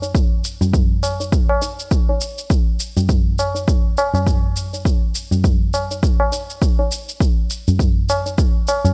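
A swung 4/4 groove at 102 BPM drives this hypnotic, warm downtempo passage, cut from a longer piece. An overdriven electronic kick, punchy and layered, sits up front alongside a close, dry, high-tuned tabla with a short ring. An overdriven electronic shaker, re-recorded in a large room, sits lower in level in an otherwise dry mix.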